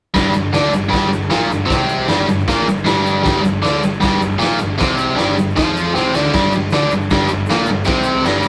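A straight 4/4 pulse drives this raw, swaggering garage rock excerpt at 155 BPM, where a biting, double-tracked overdriven guitar sits up front playing a riff over a single G5 chord, backed by a fuzz-drenched, growly picked electric bass in the background. A raw garage drum kit with a fat snare, punchy kick and crash cymbal sounds gritty and saturated with a rolled-off top, an egg shaker adds a grainy tick low in the mix, and the drums break into a brief fill at 6.0 seconds. The whole take has the rough feel of a rehearsal-room recording soaked in wet studio reverb.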